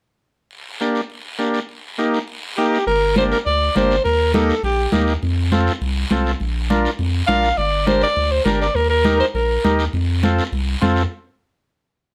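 Danceable and fiery, this cumbia snippet from a longer piece opens with a raspy guiro and a buzzy, vintage combo organ with light vibrato, joined at 2.9 s by a deep, round sub bass up front and damped, high-tuned congas in the background, while a breathy, whispered alto saxophone with plate reverb sings two short, intimate phrases before the band hits a stop at 11.1 s.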